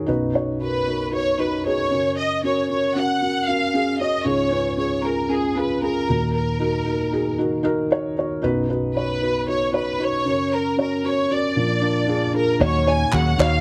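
A felt-muted upright piano, soft and intimate, opens this bittersweet, dramatic piano-driven pop excerpt in Eb minor at 115 BPM, joined at 0.6 s by a lush, vibrato-rich violin section carrying the melody over chords moving from B through Gb, Db and Ebm, before a round, punchy muted electric bass and a clean, direct-recorded electric guitar riff with ensemble chorus arrive at 12.6 s, followed by a brief burst of hollow group handclaps, all set in moderate studio reverb with a faint mains hum.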